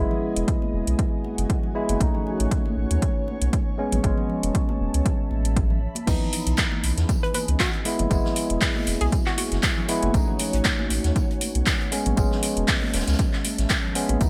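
A bright, 1980s-style digital sheen and light small-room reverb frame this hypnotic, moody deep house excerpt at 118 BPM, swung on the sixteenths and drifting through extended chords such as F#9sus4, B9, Amaj9 and C#m9. Up front, clean tine electric piano stabs and a round sine sub bass breathe with sidechain pumping, while an overdriven, punchy electronic kick and a tape-warm house kit with metallic hats, handclaps, shaker and crash drive the groove, and an ethereal, airy pad with phaser and ensemble chorus sustains softly. Hard-hand congas and bongos sit in the background, a natural acoustic jazz kit with snare and tambourine joins at 6.1 seconds, and a hollow, bouncy square-wave pluck with digital delay appears briefly from 7.2 to 9.5 seconds.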